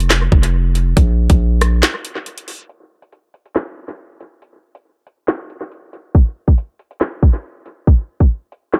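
Drill hip hop with a cold, tense half-time feel, cut from a longer piece, built on a distorted 808-style bass and an electronic drill drum kit, both sitting up front in a dry, echo-heavy mix under a low-pass filter. The bass is heavy and aggressive, a sine tone with a noise layer, fast attack and decaying tail, and it drops out at 1.8 seconds for a short break. From 2.7 seconds the drums carry on alone through a filter sweep: a hard-clipped kick, woody snare, metallic hats, handclaps and rim clicks, the whole kit tape-warm and fed through analog delay.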